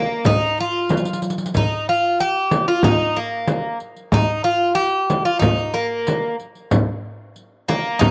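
A straight 4/4 pulse at 93 BPM, set by a deep, band-limited frame drum up front, a crisp metal-shell darbuka played with soft hands and a riq with bright, compressed jingles, drives this hypnotic, melancholic Turkish makam ensemble fragment cut from a longer piece, where a metallic, picked Greek bouzouki with double strings and a cassette-tape tint carries the melody between Bb3 and G4-30c, a drum fill breaks in from 0.9 to 1.5 seconds, and the home cassette recording sits in a light small-room reverb.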